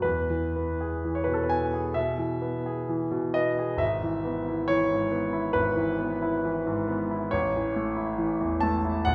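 A clear, polished concert grand piano sits up front with a deep bass, playing alone through this nostalgic, dreamy fragment of a romantic classical nocturne in a rubato 4/4, tuned to A4 = 438 Hz and moving from E to E/G# at 3.8 seconds and on to A at 7.3 seconds, all set in the wet 1.5-second reverb of a recital hall.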